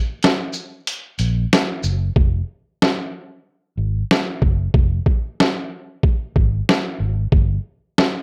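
A lo-fi, sampler-style drum kit opens this gritty, dark boom-bap hip-hop excerpt at 0.2 seconds, moving at 93 BPM in 4/4 with a 56% swing on the sixteenths. The kit sounds compressed, pitched down and muffled, with overdrive roughening its edges and the ambience of a large room baked into its hits. Hi-hat, shaker and a medium-tuned snare carry the groove early on while the thumpy kick drops out, and a fingered electric bass enters at 1.2 seconds, sitting low between F1 and Bb1 with a round, amped tone. From 2.2 seconds the kick returns and the hi-hats fall away, leaving the heavier drums and the shadowy bass up front together. Light reverb and a rough home-demo mix give the whole cut an unpolished, homespun character.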